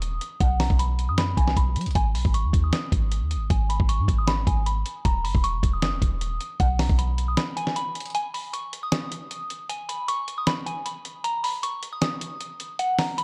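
This brooding, menacing trap excerpt moves at 155 BPM in a half-time feel, set in G# minor. A soft, pure FM synth bell carries the melody up front throughout, its mellow tone colored by chorus, phaser and a low-pass filter, with a filter sweep running over it until 8.1 seconds. Beneath it, a deep, boomy 808-style bass with a clean sine tone, fast attack and decaying notes holds the low end until 7.4 seconds, after which a short break leads into the closing stretch. A dusty, sampler-style drum kit plays for the whole clip, with a thumpy kick, fat snare and hi-hat that sound compressed and gritty, re-recorded in a large room yet kept up front. The harmony moves from B to G# minor and D# minor before dropping away to a chordless passage at 6.6 seconds, all within a dark production set in digital ambience.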